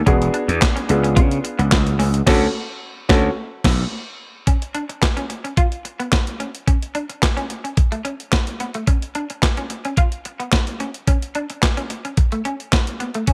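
Early-eighties boogie funk with a smooth, feel-good mood, this excerpt opens with an intimate grand piano, audible action noise and all, alongside a twangy, chorused electric guitar riff and a growly, overdriven slap bass sitting up front, moving through E7, C#7b9 and Dmaj7 before a band accent and a piano fill. The piano stops at 3.3 seconds and the bass at 3.8 seconds, leaving the picked guitar riff and a thumpy, sampler-style 12-bit drum machine with gated reverb on kick, snare, hi-hat, handclaps and crash to carry the rest, alternating C#7 and Bsus2 with breaks in between. The whole sits in a digital ambience.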